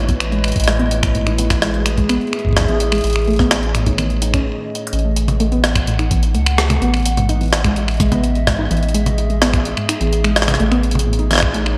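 Glitchy and playful, this short IDM excerpt sets a warbling, tape-like pad of sustained chords under a dusty, detuned pluck spinning arpeggios through chorus, delay and shimmer reverb, while a round, nasal analog bass holds the low end. Up front, a gritty, pitched-up jungle-style sampler kit of finger snaps, hi-hat, rim click and toms sits in gated reverb and delay, with a thumpy kick further back. A brief stop arrives at 4.5 seconds, a fill lands at 4.7, and the groove resumes in a second section from 4.9 seconds, all framed by a plate reverb and bright 1980s-style digital sheen.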